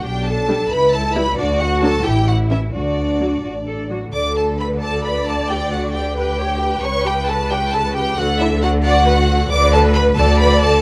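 A clear, up-front violin section carries the melody high above the ensemble in this spirited, lively classical-period movement for string orchestra, moving in a straight 6/8 at 89 BPM in D major, cut from a longer piece. A second violin section adds a lush, expressive line beneath, while a focused, close viola section joins with accompaniment at 0.5 s. A distant, smooth cello section and a clear double bass section anchor the bass under light reverb in a dark, warm production.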